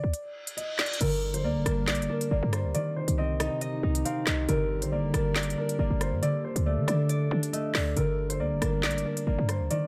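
A half-time drill groove drives this dark, menacing hip hop fragment, with an up-front electronic kit of woody snare, crisp hats, rim clicks, handclaps and crash, and a punchy, tight 808-style bass with a noise layer and fast, decaying attack. After a short opening break where a reverse cymbal rises into 1.0 seconds, a fingerpicked concert harp rings out through a low-pass filter, while a mellow, boxy grand piano carries the filtered melody. Underneath, a moody, detuned analog pad with sub octave and chorus sits in the background from 1.3 seconds, all held in light digital reverb over a Gm, Cm, Dsus4 progression.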